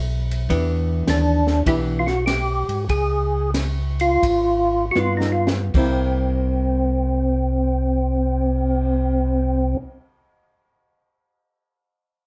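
Greasy and swinging, this short soul jazz organ trio cut moves in a loose 4/4 swing, its tempo sliding between 73 and 105 BPM and slowing down from 0.5 to 5.7 seconds, centered on C mixolydian. A mellow tonewheel organ carries the bass line from the very start, round and dark with key click and a slow rotary speaker, sitting up front in the mix. The compact cocktail drum kit enters at 0.3 seconds with an acoustic, small-room sound: a high-tuned snare, tight kick, cymbals and toms, all with a dark, rolled-off top, capped by a drum fill from 5.0 to 5.7 seconds. A hollow-body archtop guitar, picked clean and compressed with a dusky tone, comps chords moving from Em7 to Db7 and then C7. The melody arrives on a second tonewheel organ at 1.1 seconds, fat and percussive with third harmonic percussion, chorus vibrato and a slow rotary speaker, all heard as a band playing live in one room with moderate studio reverb.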